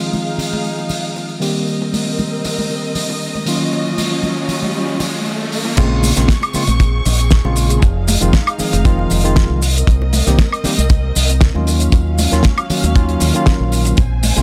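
Nu-disco at 117 BPM with a groovy, sleek feel, cut from a longer piece, where a bright tine electric piano with tape echo and dark, bowed studio strings with vibrato, portamento and sidechain pumping ride over Fm7, Cm7, Ebm9 and Bbm9 chords alongside very quiet, soft-handed tambourine, congas and bongos and a damped 70s drum kit with a fat snare and dark cymbals, until a background electronic riser from 2.7 seconds leads into the drop at 5.8 seconds, where a round, punchy fingered electric bass with an envelope filter and tube saturation and a tight, dry, up-front kick drum join the groove in a light studio reverb.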